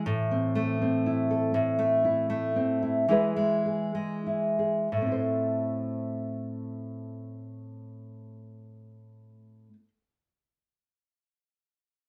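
Closely miked and lightly reverberant, this reflective, wistful folk excerpt in 3/4 features a solo nylon-string guitar, warm and up front with fresh strings and a thumb-plucked classical touch, moving from A minor to E and back to A minor at 4.9 seconds after slowing down between 1.5 and 4.9 seconds.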